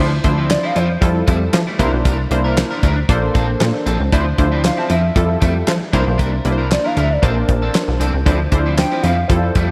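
A straight 4/4 groove at 116 BPM drives this danceable, funky stretch of early-eighties boogie funk in D minor, cut from a longer piece. A damped 70s drum kit joins at 0.2 seconds with a fat snare, tight kick, hi-hat and handclaps, dry and up front, while a plucky analog bass with a fast attack and punchy, detuned, wave-folded tone anchors the low end. A funky polysynth comp warbles through chorus with a vintage sawtooth bite, and an electric guitar at the edge of break-up plays a picked riff, slightly broken-up and coloured by analog chorus. A hollow, woody clarinet-like synth lead with vibrato, chorus and tape echo appears briefly at 0.5 seconds and returns at 4.7 seconds to carry the melody to the end. The chords cycle through Dm9, Fmaj9, C9 and Bbmaj9, and the whole mix is soaked in a lush hall reverb that gives it a dreamy glow.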